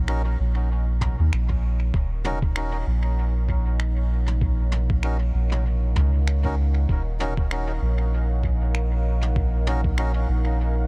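A dark, deep ambient pad fades in over a round, soft dub sub bass at the start of this cut from a longer ambient dub piece. The pad holds detuned, chorused chords in its own reverb on an Ebm7, while the sub bass sits up front with a mellow, tube-saturated weight. From 0.1 seconds a reedy, breathy melodica plays stabs through a dub echo, alongside a jazz brush kit of finger snaps and toms whose rolled-off top also trails into echo. At 1.0 seconds a muffled, thumpy electronic kick enters, compressed and pitched down with a tape-softened body. The tempo is 97 BPM in 4/4 with a light swing on the 16ths, all set in Eb minor within a small room ambience that keeps the mood spacious and meditative.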